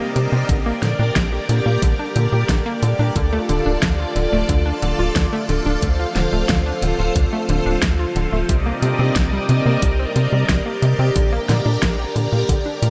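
A lush, vintage string machine in sustained chords opens this nostalgic, cinematic synthwave excerpt in D phrygian at 90 BPM, swirling with phaser, ensemble chorus and sidechain pumping alongside a round, detuned analog pluck whose arpeggios shimmer through chorus and delay. From 0.2 seconds a tight, punchy sequencer bass with a dark, tube-saturated sawtooth edge drives up front, joined by a background pop kit of fat snare and warm hats and, from 0.5 seconds, a knocking, overdriven electronic kick. The dreamy mix is soaked in huge ambient reverb as the harmony moves from Gm/Bb through Dm and Cm7 back to Gm/Bb.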